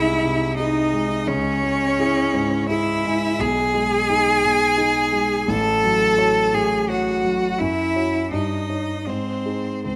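Solemn and elegiac, this slow romantic movement for piano trio moves at 85 BPM in a rubato 3/4, tuned to A4 = 439 Hz, with its harmony opening on G-sharp over B-sharp and closing on G-sharp. A single bowed violin carries the focused, vibrato-laden melody while one bowed cello, smooth, even and rich, sits up front with a second line, and a concert grand piano supplies accompaniment with deep bass and a warm body. Close, detailed microphones capture the trio in a moderate scoring stage reverb, and this brief cut from a longer piece runs all three instruments together from 0.0 to 10.0 seconds.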